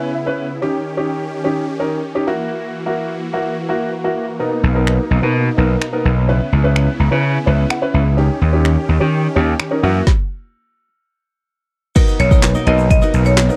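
Upbeat, euphoric dance-pop in B major at 127 BPM, this fragment opens with an intimate concert grand piano, its action noise audible, adding fills over lush, detuned supersaw chords, both pumping against the sidechain. A gritty, overdriven slap bass enters at 4.6 seconds, with an up-front deep house kit of deep kick, woody snare, metallic hats, snaps and claps following shortly after, before a stop from 10.1 seconds. At 12.0 seconds a bright rosewood marimba melody arrives alongside a clean, picked electric guitar riff with lush chorus and a grainy egg shaker in the background, all in a dry, close 1970s-style studio sound.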